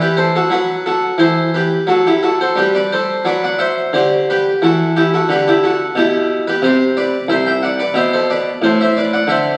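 Heard through the crackle of a very old 78 rpm record and the wet reverb of a recital hall, this radiant, flowing fragment of a baroque-style suite movement in E minor, in 3/4 at 89 BPM with a rubato feel, features a brilliant, up-front Italian-style harpsichord with octave strings, its plucked tone ranging from C2 to G5 as it moves through Am13, Cmaj9#11 and Em before settling toward D5/A at 8.6 seconds.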